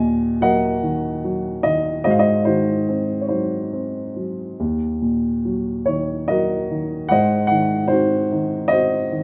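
Flowing in a rubato 6/8, the pulse eases and stretches freely, giving this brief classical fragment a lyrical, unhurried sway. A lone baby grand piano carries everything across the full 9.2 seconds, ranging from Eb2 up to Ab5 with a tone that is dark, mellow and slightly boxy. Its notes have a short sustain and sit up front in the mix, wrapped in a light reverb. The harmony rocks gently between Ebm and Ab7, returning to Ebm at 4.6 seconds before turning once more to Ab7. The mood is calm and tender, and the passage feels lifted from a longer piece.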